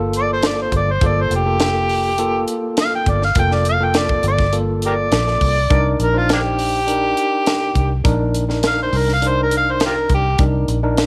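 A straight-eighth soul blues groove in 4/4 moves at 102 BPM in G minor, with a soulful, smoky mood across this short cut from a longer piece. The tight funk drum kit enters at 0.1 seconds, sounding acoustic and up front in a small room, with a high-tuned snare, a tight kick and hi-hat. Underneath, a vintage muted fingered electric bass gives a dark, round, foam-muted, amped tone, while a clean tine electric piano, heard through its built-in speakers, supplies accompaniment over the shift from Gm7 to Cm7 at 5.7 seconds. Leading from 0.2 seconds, the overdriven harmonica carries a jazz-style solo that is gritty and amplified, with light vibrato, tongue slaps and scooped notes, standing out as the loudest part before it stops at 10.4 seconds. Studio reverb places the parts in a shared space.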